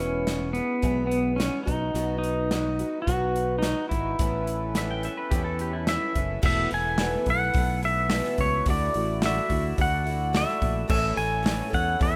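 A straight 4/4 pulse at 107 BPM carries this nostalgic, hopeful stretch of folk rock and heartland rock, cut from a longer piece, with a natural country drum kit entering at 0.3 seconds, its punchy kick and medium-tuned snare sitting up front beside a fingered electric bass. A twangy pedal steel guitar carries the melody with fingerpicked slide and volume swells over a boxy, shimmering twelve-string acoustic guitar, while a reedy accordion holds sustained chords in the background from 1.9 seconds and a second pedal steel line appears briefly at 4.8 seconds. The rough home demo mix has light small-room reverb, and the harmony settles into E mixolydian from 6.4 seconds, moving through Esus4, Dadd9 and A.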